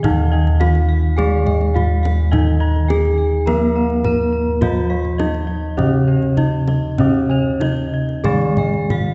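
Heard from further back in a reverberant concert hall with a dulled top end, this serene, shimmering Javanese gamelan excerpt in Eb slendro moves at 104 BPM in 4/4 with uneven beats: bronze metallophones carry a melody, a lower accompaniment and high arpeggios, one ringing under a wooden mallet and the others bright under horn mallets, one with paired tuning that shimmers, while two sets of round bronze bossed gongs, one close, dry and up front under padded beaters and the other boxy, play high arpeggios and a prominent bass, and a deep, acoustic kendang supplies the percussion.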